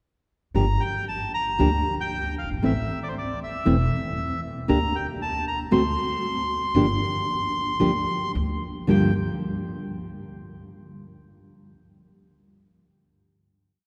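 A tense, melancholic tango with a rubato feel, this short complete piece opens at 0.5 s with nylon-string guitar and upright bass, and the bandoneon joins at 0.6 s. The fingerpicked classical guitar sits up front, full-bodied and warm, supplying the accompaniment in short tango chords. Beneath it, the woody, warm pizzicato upright bass plays a marcato tango rhythm in two. The reedy, bright and airy bandoneon carries the melody up front, building it from motifs shaped into sentence-like phrases. After a brief break in the harmony, the piece settles on a final Gm7 chord at 8.9 s, and a wet cathedral reverb from a church or concert hall lets the sound ring on to the close.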